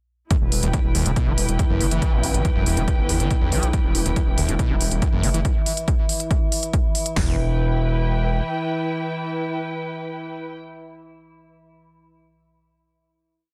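Relentless and industrial, this driving peak-time techno piece in E minor runs at 140 BPM on a straight four-on-the-floor groove, with a punchy, up-front techno drum kit, smooth programmed electronic hi-hats pumping under sidechain, a gritty saturated synth bass rolling in sixteenth notes, a screaming distorted acid line squelching with accents and slides through chorus, cassette-tape coloring and delay, an eerie metallic FM drone, and a veiled, muted string section bowing slowly shifting chords, until the groove gives way at 7.2 seconds to a final chord that lasts to 10.6 seconds.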